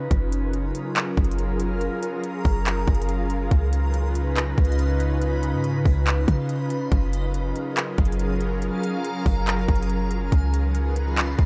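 A digital, ambient sheen opens this blissful, floating excerpt of atmospheric cloud-rap in F# major at 141 BPM with a half-time feel, where an ethereal, detuned pad sustains chords through chorus, reverb and sidechain pumping over a deep, boomy sine 808 bass and an up-front trap kit of hard-clipped kick, crisp hats and handclaps, while from 0.7 s a reversed, granular texture glimmers above, all moving between F#maj9 and C#9.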